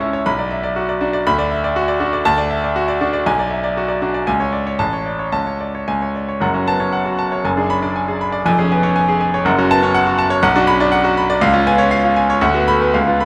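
A clear concert grand piano, up front with deep bass and audible action noise, plays alone from 0.0 to 13.2 seconds in this stormy, passionate excerpt from a longer virtuoso classical study, its rubato in 2/4 ringing through moderate recital hall reverb as the harmony moves from B minor toward a second section beginning at 6.4 seconds on F-sharp minor.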